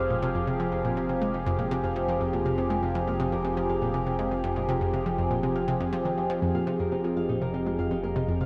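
A resonant, wave-folded pad sits up front with sustained Fmadd9 chords under chorus and phaser, above a round, detuned analog pluck riff with tape echo, a fat, thick analog bass anchored on F1 with tube saturation, and a ringing, fingerpicked Celtic harp arpeggiating in the background, forming expansive, cosmic, sequencer-driven ambient space music in F minor at 121 BPM, soaked in a huge, dreamy reverb.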